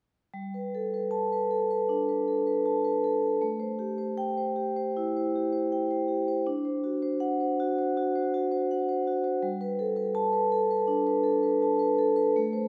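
A ringing, metallic vibraphone sits up front in a wet church reverb, its tones carrying a long 2.9-second tail through the space. This playful, warm excerpt from a contemporary classical piece moves at a rubato 80 BPM in 4/4 and G major, tuned to A4 = 438 Hz. The solo vibraphone, struck with medium mallets and played with the motor off, spans G3 to A5 as it moves from Gadd9 through Am7 and D7 and back to Gadd9 between 0.3 and 12.7 seconds.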